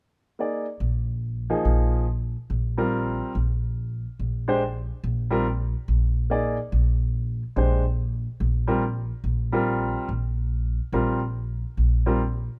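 A plucked, woody upright bass with steel strings sits up front, entering at 0.8 seconds on a low Bb beneath a clear, open upright piano that begins at 0.4 seconds with a rootless Ebadd9 voicing. This hypnotic, spiritual jazz fragment in Eb major swings at 142 BPM in 4/4. Close, detailed microphones and very little reverb give both instruments an intimate presence until the piano stops at 12.2 seconds.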